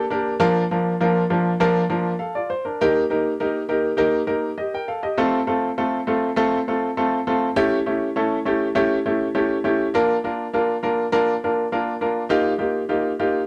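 A clear, natural baby grand piano sits up front in this short, uplifting soul cut from a longer piece, playing solo at 101 BPM in a straight 4/4 through chords of Bb/F, Eb, F, A7, Bb and Ebadd9 across about 13.4 seconds, ranging from F3 to G5 with light reverb in a dark, warm production.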